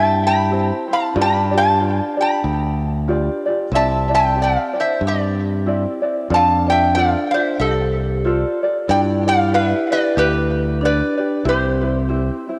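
A sunny, dreamy Hawaiian piece in C major at an easy 93 BPM, with a gentle swing on the eighth notes, taken from a longer recording. A metal-body resonator slide guitar carries the melody up front, its bright, nasal, metallic voice played with fingerpicks and coloured by cassette tape and tape echo. Behind it, a vibraphone struck with medium mallets, motor off, adds a ringing second line that sounds close and dry yet sits in the background. A tenor ukulele, thumb-plucked and light, supplies a warm accompaniment, while a punchy fingered electric bass with a direct, transformer-saturated tone stays prominent until 12.3 s. The harmony moves from C through G7, Cadd9 and F6 to G before settling back on C at 11.5 s. The whole has the soft grain of a home cassette recording, set in a lush hall reverb.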